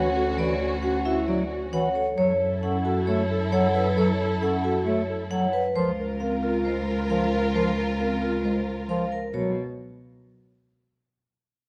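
This minimalist classical pattern music opens with every part sounding at once, moving in a straight 4/4 at 134 BPM with an urgent, hypnotic pull. Two vibraphones carry the upper layers. One, struck with medium hard mallets, plays the metallic, ringing melody with a fast motor vibrato and an airy shimmer, while the other, played with soft mallets and its motor off, spins mellow arpeggios beneath it. A pure, close-miked alto flute with a crisp attack and vibrato traces a second line, and a smooth-topped bass clarinet in classical style supplies accompaniment. A distant studio string section holds bowed, expressive chords with soft attacks and portamento, and a single warm cello, up front, anchors the bass. Light reverb surrounds the ensemble as the harmony moves from Dmaj7 through F#m7 to C#6 and then turns to B5 at 9.3 seconds, with the parts stopping between 9.0 and 9.5 seconds.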